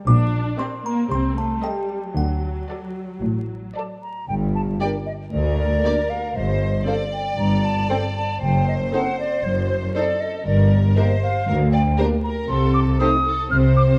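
A delicate, tinkling music box carries the opening melody of this mischievous, whimsical film cue, heard over bowed string sections: a clear, up-front double bass section and a focused cello section share the bass, while a lush viola section with vibrato and portamento fills in the accompaniment. Just after the start, an expressive violin section takes up a quiet melody and a rich, smooth violin section adds a more distant second line. The music box drops out at 3.7 s, and a hollow, pure concert flute enters at 3.8 s with a tongued second line of its own. A mellow French horn section joins at 4.8 s, holding soft-attack chords in the background as the harmony leans on diminished colours in the quirky second section. The dark, warm production sits in a moderate scoring-stage reverb with a layer of vinyl crackle, and the passage is cut from a longer piece.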